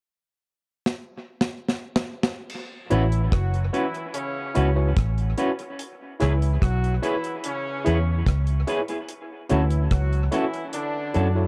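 Tender and romantic, this lovers rock reggae fragment at 73 BPM in A major opens with a deep reggae drum kit playing a fill from 0.8 seconds (kick, snare, rim click, hi-hat and crash, tight and up front with dub echo) before a round, foam-muted electric bass, bright twangy guitar stabs through a small old amp, a barky overdriven tine electric piano with fast tremolo, and a clear horn section in octave doubling with light vibrato and dub echo all enter at 2.9 seconds over A69, C#m7 and Dmaj7 in a dark, warm small room.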